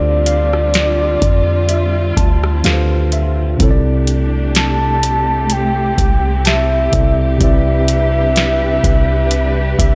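A booming analog drum machine with a deep kick, crisp snare, metallic hats and rim clicks enters at 0.3 s beneath a deep, boomy 808-style bass, setting a lightly swung, smooth and romantic contemporary R&B groove, while a worn, slightly out-of-tune tine electric piano plays a fill from 1.7 s, a distant bowed string section sustains expressive chords, a glassy wavetable pluck shimmers with chorus and tape echo in the background, and a soft, round octave-layered synth lead with chorus, tremolo and tape echo carries the dark, full melody in this dry excerpt from a longer piece.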